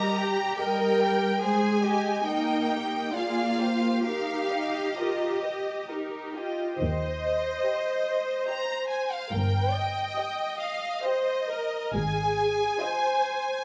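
A lyrical, tender slow romantic movement for string orchestra in Eb major, swaying in a rubato 3/4 at 64-74 BPM, opens with an up-front, smooth-topped violin section singing the melody over a darker, more distant second violin line, lush violas and rich, close cellos, all with vibrato, until a shadowy bowed double bass section joins at 6.8 s, the whole cut from a longer piece and set in a moderate scoring-stage reverb with detailed close miking.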